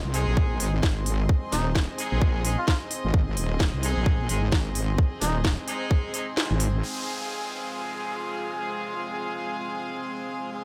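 A swung 4/4 groove at 130 BPM drives this aggressive, bouncy bass house passage in F minor, cut from a longer piece, with a tight, up-front electronic kick layered under a garage drum kit of cracking snare and crisp hats, both tape-warm and re-recorded in a large room. A heavy, saturated wobble bass with a detuned sawtooth edge and overdrive pumps against the beat, while a deep, moody ambient pad evolves slowly in the background and a rich chamber string section adds a reedy, gut-string, period-style texture. A clear horn section plays soft-attack jazz stabs through a low-pass filter and delay, and from 1.5 seconds a cup-muted trumpet sings a short, veiled jazz melody with vintage 12-bit sampler grit. At 6.4 seconds the kick drops out on a band accent, and at 6.8 seconds the music moves from Ab to Fm as the bass and drums fall away and an electronic downlifter enters alongside the sustained pad, strings and horns. 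Light digital ambience frames the whole mix.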